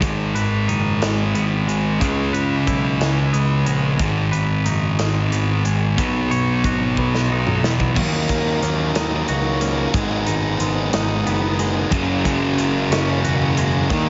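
A slow, swaying 6/8 pulse anchors this brooding, cathartic alternative rock passage, cut from a longer piece, with a big acoustic drum kit of punchy kick, medium-tuned snare, toms, hi-hat and bright cymbals ringing in a large room and rolling through fills that close each phrase. Up front, a thick, bright fuzz guitar grinds out a distorted picked riff, and at 8.0 seconds a darker fuzz guitar takes up the riff as the chords shift toward a heavier minor turn. The bright fuzz guitar drops out for a few seconds and returns at 11.9 seconds, so the two stack together for the final stretch. Beneath them, a growly overdriven electric bass adds a punchy low-end snarl, while a twangy, scooped clean guitar picks phaser-tinged arpeggios far back in the mix. The whole sound is squeezed by heavy compression into a radio-like band with its top end shaved off, lit only by light reverb and studio ambience.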